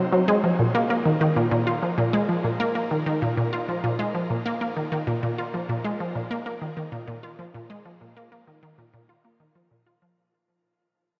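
A straight, even pulse in 4/4 carries this cosmic, hypnotic ambient fragment, cut from a longer piece. The only voice is a resonant blip pluck, playing alone from 0.1 to 10.1 seconds. It sits up front, bright and squelchy, with a fast attack and short decay that give each note a juicy filter snap. The detuned tone, built from square, sawtooth and triangle waves, gains extra shimmer from chorus and a tape echo. Around it hangs a long, glistening reverb tail and the warbling pitch drift of worn cassette tape. A fade-out begins almost at once, at 0.3 seconds, and runs to the end at 10.2 seconds.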